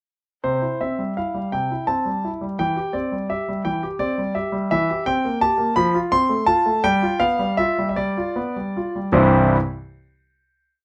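A classical-period piano sonatina in C major, this short complete piece moves in a straight 6/8 at roughly 51-57 BPM, counted in dotted quarters, with an elegant, playful mood. A concert grand plays alone from 0.4 to 9.6 seconds, spanning C2 to C6, with a single-line melody over broken-chord bass. Its tone is warm, intimate and polished, with deep low notes, long sustain and audible action noise, and the instrument sits present and up front. The harmony travels from C through C/E and C7/E to F and G7 before settling on a final C chord at 9.1 seconds, while the tempo slows from 3.7 seconds onward toward that cadence. Light reverb and a dark, warm production round out the sound.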